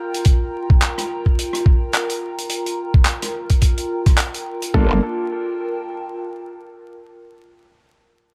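A gritty, pitched-down electronic kick thumps up front through this swaggering glitch hop excerpt, set at 107 BPM in G minor with a 16th-note swing. Beside it, a vintage acoustic kit with a rolled-off top adds handclaps, hi-hat and rim clicks, while a warbling, lo-fi pad carries a Gm7 chord under chorus, phaser and sidechain pumping. The vintage kit stops at about 4.7 seconds, with the kick following a moment later, as the harmony moves to Gm9 and a saturated growl bass rumbles in on a low G with a wobbling, formant-filtered edge. In the same brief moment, a clear, intimate grand piano lands a stab, its action noise audible and a dub echo trailing behind. The pad lingers alone until nearly 7 seconds, and the whole piece sits in a small, echo-heavy room dusted with vinyl crackle.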